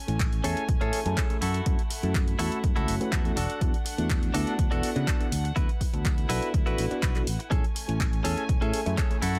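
Joyful and feel-good, this short cut from a longer piece of filtered disco house moves at 123 BPM in a straight 4/4, rooted in A major and cycling through Amaj7, F#m7, E9sus4 and D69 before returning to Amaj7. An overdriven, up-front electronic kick anchors the groove, joined by a dry, punchy analog drum machine supplying handclaps and hi-hats, with sidechain pumping on the hats. A fingered electric bass with tube saturation holds down the low end, while a gritty, reedy electric piano through a combo amp carries the accompaniment with phaser colour. A bright, twangy, clean electric guitar recorded direct plays a compressed, picked riff from 0.4 seconds, and a studio violin section with light vibrato, a smooth top and a gut-string, period-style tone sustains warm chords, roughened by vintage 12-bit sampler grit. The bass, electric piano, guitar and violins all sit under a low-pass filter and pump with sidechain compression, and the mix is dry, with little reverb.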